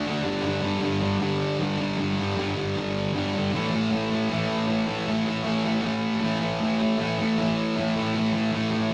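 A thick, bright fuzz guitar plays alone from the start, picked and double-tracked up front, sounding out a G5 chord at 0.3 seconds before moving to A5 at 3.5 seconds. The mood is raw and swaggering, a straight rock feel in 4/4 cut from a longer piece. A wet stone-room reverb and tube saturation give the rough rehearsal-room recording a gritty character.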